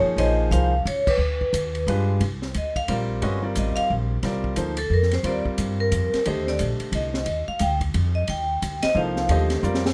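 A ringing vibraphone with a slow motor vibrato carries the melody and then takes a solo from 2.2 seconds in this cool, spiritual modal jazz waltz cut from a longer piece, backed by an intimate grand piano with audible action noise, a woody, thumpy pizzicato upright bass, and an open jazz kit with dark cymbals, a high-tuned snare and a boomy kick, all in a dry, close setting marked by a band accent at 1.0 seconds and a closing drum fill from 9.6 seconds.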